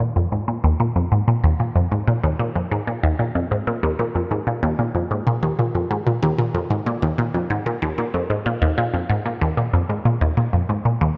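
Expansive and mysterious, this ambient fragment moves at 94 BPM in a straight 4/4, tuned slightly sharp to A4 = 445 Hz. A lone resonant blip pluck carries it from 0.0 to 11.1 s, sitting up front with a squelchy, detuned sawtooth bite, a ring-modulated edge and a fast, short filter pluck in the low register from Eb2 to Bb2. Phaser and delay color the pluck, and a lush hall reverb with a 2.5-second tail surrounds it.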